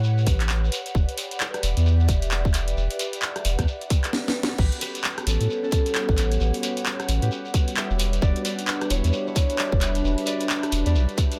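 A swung two-step garage groove in 4/4 carries this soulful, moody excerpt from a longer piece. A tight, up-front electronic kick and a tape-tinged house kit of cracking snare, handclaps, hi-hat, rim click and crash cymbal arrive at 0.3 seconds, with a grainy acoustic shekere in a live room riding alongside. A thick, deep sub bass with a fast attack sits prominently underneath, while an airy, breathy pad with chorus, phaser and sidechain pumping holds sustained chords between A13 and Em7. A warbling, lo-fi pad with a nostalgic, vintage character adds a hazy texture through its own chorus, reverb and pumping. After a drum fill at 4.1 seconds and a band accent, the drop lands at 4.6 seconds, where a mellow, ringing concert harp enters with the melody through tape echo, all set in a digital ambience.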